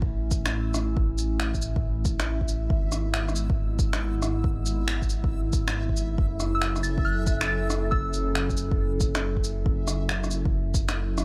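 This ghostly, melancholic future garage fragment opens on a warbling, lo-fi pad holding sustained chords, washed in chorus and its own reverb and pumping against the beat. Beneath it sits a dark, rumbling detuned saw bass, saturated and up front and also pumping, while a deep, layered electronic kick drives the swung groove. A reversed, dreamy texture swells faintly in the background on a single high note, and an up-front, tape-warm blend of electronic shaker, finger snaps and rim click enters at 0.3 seconds, sounding re-recorded in a small room. The harmony moves from A to E over G# and then to F#m7. From 6.5 to 8.5 seconds a soft, pure FM bell carries a brief high melody, roughened by vintage 12-bit sampler grit and trailed by analog delay, before the piece is cut off mid-flow.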